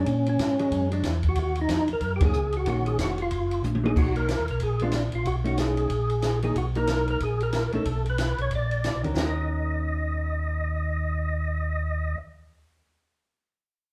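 Soul jazz organ trio music in Eb minor, this is a soulful, smoky fragment cut from a longer piece, swinging at a brisk 185 BPM in 4/4. A percussive tonewheel organ carries the melody with a fat, clicky tone, its third harmonic percussion and chorus vibrato feeding a slow rotary speaker. A second, mellow tonewheel organ supplies a round, dark bass line through its own slow rotary. A vintage hollow-body jazz guitar plays clean, picked, compressed accompaniment, while a compact cocktail drum kit adds punchy kick, a high-tuned snare, toms and dusky ride, hi-hat and crash cymbals with a rolled-off top. The band hits an accent at 2.2 seconds, the drums play a fill into a new section at 4.0 seconds, and they drop out at 9.3 seconds as the harmony settles back on Ebm7. A club reverb places the group somewhat back in the room, giving the whole a roomy, smoky atmosphere.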